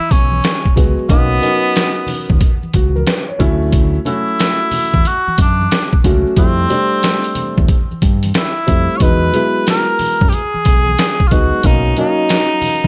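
Light reverb and small room ambience give this smooth, relaxed jazz-hop excerpt an intimate sound at 91 BPM, with a swung sixteenth-note lilt. A mellow cor anglais carries the melody up front with classical-style vibrato, joined at 0.8 seconds by a dark, woody upright piano, while a round, deep fingered electric bass and a compressed, gritty sampler-style drum kit with a thumpy kick and tape-warm character hold the groove. Ringing maracas and congas sit in the background as the harmony moves from a rootless Eadd9 through Bmaj9, Dmaj9, Fmaj9 and Emaj9 before returning to Bmaj9.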